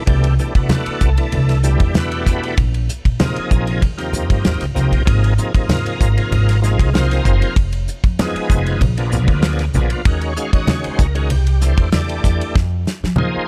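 A dry, tight-kicked 70s drum kit with dark cymbals sits up front in this driving, slick electric jazz fusion fragment at 96 BPM in 4/4, joined by a woody, growly pizzicato upright bass, bright low-tuned congas in the background, and a gritty, shouting overdriven tonewheel organ with chorus vibrato and slow rotary speaker accompanying through rich chords from Cmaj9#11 to Fm7, before a drum fill arrives at 12.6 seconds.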